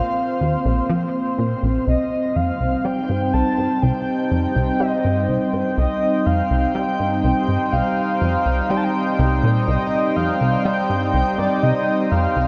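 Hypnotic and expansive, this 12.5-second excerpt of ambient, sequencer-driven space music moves at 123 BPM in C minor, shifting from Bbsus2 to Cm at 1.9 s. A bright, detuned resonant pad sustains evolving chords with chorus and shimmer reverb, while a breathy, flute-like lead with vintage vibrato and a soft noise layer carries the melody through analog chorus, shimmer and delay. From 0.4 s a punchy, funky analog bass riff with a fast filter pluck sits up front, its delay and ensemble chorus adding motion to a dreamy mix soaked in plate reverb.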